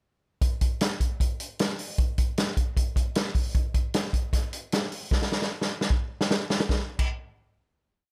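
A brisk, straight indie backbeat in 4/4 drives this short, breezy indie pop piece, and its youthful spirit comes entirely from a vintage drum kit. The acoustic kit enters at 0.4 seconds and sits up front, with a punchy kick, a medium-tuned snare, hi-hat and crash cymbal carrying the groove through the verse. Its character is natural and rolled-off at the top, with dark cymbals that keep the brightness in check. A drum fill arrives at 5.1 seconds and leads into a final hit at 6.7 seconds, bringing the piece to a close. The kit was captured in a studio room with a light touch of reverb, giving it a warm presence.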